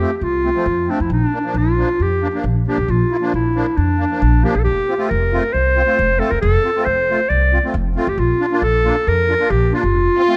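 A smooth-topped, classically styled solo clarinet sits up front with the melody in this soulful, festive klezmer excerpt at 136 BPM, over a reedy, shimmering musette accordion, close-miked and dry, and a woody, thumpy pizzicato upright bass, the harmony moving between F and Bb, with a warm bowed violin slipping in at 10.2 s with vibrato and portamento, the recording heard through close, detailed microphones with light reverb.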